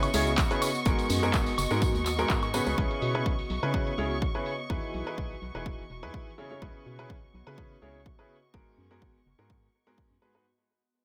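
A lightly swung groove, with a punchy, tape-warm electronic kick entering at 0.4 s under an analog drum machine's filtered handclaps, hi-hat and woodblock and a tambourine that drops out at 2.8 s, drives this bittersweet yet energetic piano house excerpt, where a clear, woody upright piano riff with audible action noise and tape echo sits up front over a hollow, organ-like FM bass, a veiled con sordino violin section holding sustained chords, and a cloudy granular pad in the background, all pumping to the sidechain across a C#m7, G#m9 and Emaj7 progression as the whole passage fades out.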